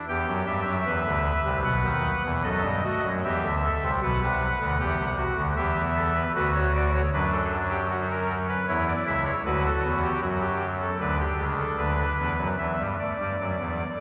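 Elegant and joyful, this excerpt from a longer piece is a baroque-style three-part fugue in E minor for pipe organ at 77 BPM in a straight 4/4, its harmony moving from E minor through B minor and F-sharp seventh colours before settling back on E minor at 12.6 seconds. A single organ voice on a soft reed oboe stop plays throughout, with baroque voicing, chiff on the attacks and a tremulant, sitting up front while spanning B1 to G5. A wet church reverb with a 3.8-second decay places the listener further back in the room, giving the reed a long tail.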